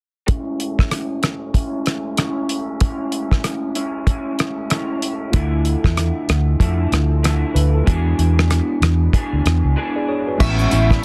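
A dense, heavily limited mix with light reverb opens at 0.3 seconds on a sunny, laid-back indie bedroom pop groove at 95 BPM in A major, swung 16ths, with a dry, cloth-damped thuddy drum kit up front and a slightly broken-up, lo-fi electric guitar through a small old amp, its analog chorus and warbly pitch drift giving it a wobbly haze under a filter sweep. At 5.3 seconds a round, foam-muted vintage bass arrives alongside a worn, slightly out-of-tune tine electric piano sitting in the background with tape-like overdrive, as the chords move from Amaj7 to Dmadd9 and E7. After a short break, the return to Amaj7 at 10.4 seconds brings in a glossy, airy chorused retro synth lead on E5, a pure FM synth bell with phaser and delay, a hollow, flute-like pad and a jingly tambourine before the cut.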